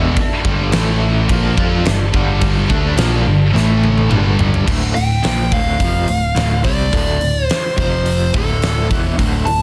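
A straight, heavy 4/4 groove drives this menacing hard rock passage, cut from a longer piece, as a huge arena drum kit sits up front with punchy kick, fat snare, toms, hi-hat and crash cymbal ringing in a big, airy room. A picked electric bass growls low underneath, while two overdriven semi-hollow guitars play the riff throughout, one bright and hollow-toned with tremolo, the other warmer and set in the background. In the opening part a double-tracked, high-gain guitar adds a distorted edge to the riff, and a piping tonewheel organ with key click and slow rotary speaker holds sustained chords in the background, with the harmony moving between G5 and A5 power chords. A drum fill from 3.5 seconds leads into a shift to D minor at 4.7 seconds, where the organ and high-gain guitar drop out. At 4.9 seconds a dark, smooth, overdriven lead guitar enters up front with a melody over F5 and D5 chords, all held together by a dense, heavily limited modern master with light reverb.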